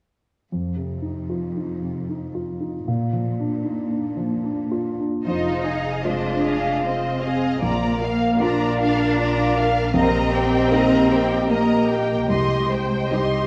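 Moving and bittersweet, this cinematic film-score cue in F dorian unfolds at a rubato 76 BPM in 3/4, opening with an up-front concert grand piano with deep bass and a dark, woody cello section carrying the low line. At 5.2 seconds the orchestra blooms: a rich, expressive violin section with soft attack sings the melody, joined at 5.3 seconds by a focused second violin line, a viola section with portamento, a mellow French horn section holding sustained chords and a double bass section anchoring the bottom. Everything sits in a wet scoring-stage reverb and a worn, warbling old-tape sound with pitch drift, as chords move from Fm7 through Bb and Eb/Bb to Cm before this cut from a longer piece ends.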